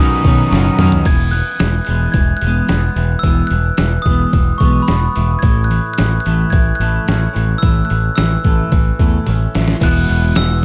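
A buzzy vintage combo organ holds very quiet chords alongside two picked electric guitar riffs and a growling fingered bass, with the organ dropping away at 1.0 s in this carefree, jangly indie rock excerpt cut from a longer piece. One guitar is twangy and scooped with a subtle chorus, while the other sits in the background, clean and glossed with lush chorus. Up front, the bass is punchy, bright and overdriven, and a boom bap sampler-style kit brings a thumpy kick, medium-tuned snare, hi-hat, crash and toms, sounding pitched down, gritty and compressed, as if re-recorded in a small room. From 1.1 s a glockenspiel struck with brass mallets carries the melody in a sparkling, bell-like ring. Drum fills arrive near the start and again at 9.3 s as the harmony moves from Badd9 to Eadd9 and A before returning to Eadd9. Digital ambience gives the production a dark, warm cast.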